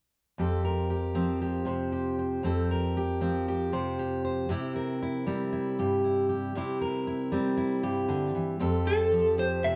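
A straight, steady 4/4 pulse carries this brief, uplifting indie folk fragment, opening at 0.4 seconds with a bright, full-bodied jumbo steel-string acoustic guitar fingerpicked up front, its finger squeak audible as it moves from Fsus2 to C. At 8.9 seconds a slightly broken-up electric guitar through a small old amp joins with a tremolo-washed melody over an Fadd9, hinting at the arrangement's build before the cut at 9.8 seconds. The band plays live together in one room, bathed in a short, wet studio reverb that gives the whole a warm glow.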